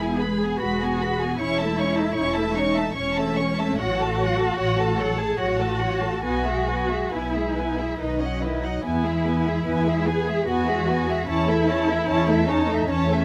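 Moving in a gently rubato three-beat pulse, this serene, tender slow romantic movement for string orchestra is cut from a longer piece, with all five sections playing throughout its 13.2 seconds. A violin section carries the melody with light vibrato, a soft sul tasto attack and an intimate closeness, while a second violin section adds an expressive line with a smooth top and violas fill in a lush, even accompaniment. Cellos and double basses anchor the bass up front with expressive vibrato, under a light reverb, as the harmony settles from E through A/E and F#m/A to B before returning home.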